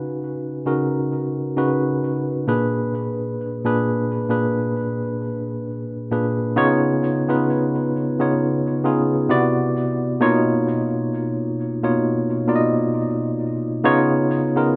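A slow 66 BPM pulse in 4/4 carries a lazy sixteenth-note swing through this moody, late-night R&B fragment, cut from a longer piece. A lone tine electric piano plays throughout, worn and slightly out of tune yet clean, heard through built-in speakers and sitting up front with a tape echo trailing behind it, ranging from Bb2 up to Ab5. The harmony opens on Db9sus4 and moves to Bb7b9 at 2.5 seconds before a second section begins at 6.6 seconds on Db7. From there it slides through Cmaj9#11 and Bmaj9#11, landing back on Db7 near the close. A moderate small-room ambience and the rough feel of a home demo, complete with a faint mains hum, give the recording an intimate, unpolished character.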